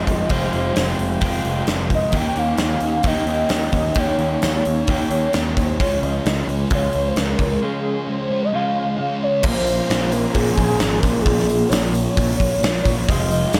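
Shoegaze-leaning dream pop rock in a brooding, melancholic Bb dorian at 131 BPM, this excerpt sets a velvety, smooth sawtooth synth lead, sweetened with chorus, analog delay and portamento, over an overdriven picked guitar washed in reverse reverb, a thick, dark fuzz guitar sitting in the background, and a round, overdriven picked bass. Up front, a gated 80s drum kit drives everything with a big-room snare, tight kick, crash and bright hi-hat, all under a light reverb. At 9.4 s the harmony turns to Bbm7 and a very quiet, jingly tambourine enters for the closing section.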